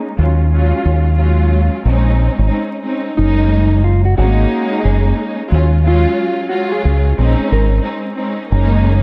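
Boom-bap hip-hop at 90 BPM with a 16th-note swing, this short cut from a longer piece feels tough and gritty, its dark production dusted with vinyl crackle and kept dry. A lush, bowed string section with soft attack and vibrato opens at 0.0 seconds, filtered and given a cassette-tape grain, while a deep, round dub bass sits up front from 0.2 seconds over minor eleventh chords. At 3.2 seconds a mellow, clean electric guitar takes the melody, colored by subtle chorus and slapback echo, before dropping out at 7.8 seconds.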